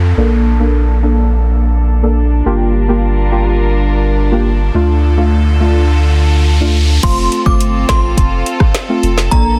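A punchy, pitch-dropping sine sub bass anchors this sunny, summery dancehall excerpt from the start, beneath a rich, reedy string section holding gut-toned chords and deep, detuned chord stabs, both pumping and filtered, while an electronic downlifter and riser build until 7.0 s, when an afro-pop drum kit with a deep kick, woody snare and metallic hats arrives alongside a ringing FM synth chime melody through phaser, tremolo and tape echo, all in a dense, dry, heavily limited mix.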